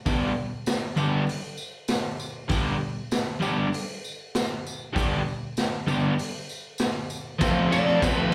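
A crunchy, overdriven electric guitar riff drives this rowdy, raw garage rock excerpt at 98 BPM in G mixolydian from the very start. The guitar is double-tracked and up front with a slapback echo, over a gritty, saturated drum kit with a boomy kick, medium-tuned snare, hi-hat and ride cymbal, and a jingly tambourine tucked in the background. The harmony moves from G to F at 7.4 seconds, and at 7.7 seconds a dark, compressed fuzz lead guitar with distortion and tape echo enters for a short phrase, all heard as a live gig through the venue's PA with moderate club reverb.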